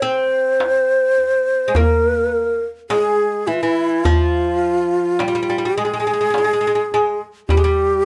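Arabic maqam ensemble music in a hypnotic, longing 10/8 at 105 BPM counted in eighths, with a breathy, mellow end-blown ney carrying the melody up front in plate reverb, a bright, woody, fretless oud playing a second line beneath it throughout, and a crisp, deep metal-shell darbuka, compressed and saturated, entering at 0.6 seconds and dropping out at 7.8 seconds in this short cut from a longer piece.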